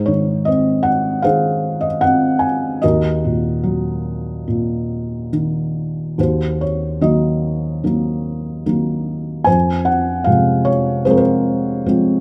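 Free-flowing rubato over a 4/4 pulse gives this brief classical solo piano passage, cut from a longer piece, a reflective, melancholic air. A felt-muted upright plays alone throughout, its thick-felted tone dark and intimate, with the soft clatter of its action audible up close under a light reverb. Harmonies move from Ab to Ebm at 2.8 seconds and settle on Fm at 9.5 seconds, with a new section beginning at 6.2 seconds.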